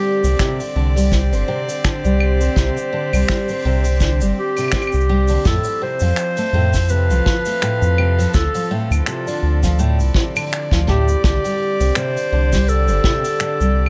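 A delayed clarinet melody opens this playful, hopeful folktronica piece at 83 BPM with a light swing, alongside the reedy, gut-string sustained chords of a close string quartet and the shimmering, octave-doubled arpeggios of a fingerpicked twelve-string guitar, while a deep, round analog bass sits up front beside a punchy kick and a small room's brushed kit of claves, finger snaps, hi-hat and shaker moving from Csus2 through F and Dm7.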